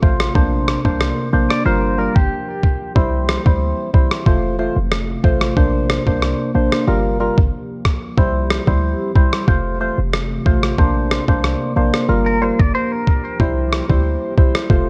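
Dancehall at 92 BPM in 4/4 with a straight, bouncy, summery feel, heard as a cut from a longer piece that cycles through Bbadd9, Gm7, C and F. A lo-fi sampler-style drum kit sits up front, its thumpy, muffled, pitched-down kick and rim click sounding compressed and re-recorded in a large room, while a short 808-style bass adds punchy, tight low notes with a fast attack and decay. A percussive organ stab carries the accompaniment, hollow and nasal yet mellow, coloured by chorus and phaser. Beneath it a deep, moody ambient pad holds sustained chords with a slow attack and long release, its dark sawtooth and sub-octave layers thickened by chorus, built-in reverb and sidechain pumping. A bright, twangy clean electric guitar appears only briefly, at 1.5 seconds and again at 12.3 seconds, playing picked arpeggios through tremolo and tape echo. The whole recording carries light digital ambience and the worn, warbling pitch drift of old cassette tape.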